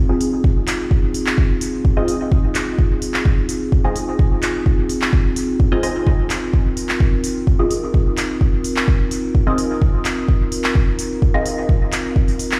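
Dub techno at 128 BPM in F minor, deep and cavernous, cut from a longer piece, where a dark, detuned analog pad sustains a single Fm7 chord through chorus and sidechain pumping, a muted, mellow filtered chord stab flickers through phaser and dub echo, a deep house kit of handclaps and smooth hi-hats trails its own dub echo, and an up-front, layered electronic kick anchors the groove, heard as if played on a big sound system in a bare stone room.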